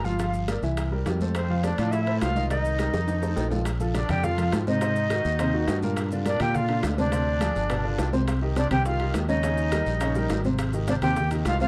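Lively and danceable, this Afro-Cuban jazz excerpt moves at a brisk 208 BPM in straight 4/4, with a reedy, airy flute carrying the melody over a sweet accordion second line and an intimate baby grand piano whose action noise can be heard. A bright, up-front fingered electric bass anchors the groove, while tight high-tuned bongos, soft-handed congas, ringing metal-shell timbales, a raspy guiro and grainy maracas sit low in the mix. A drum fill at 2.9 seconds leads into a new section at 3.7 seconds, where the key moves from F major to Bb major and the harmony travels through rich jazz chords, all in a dark, warm production with moderate reverb.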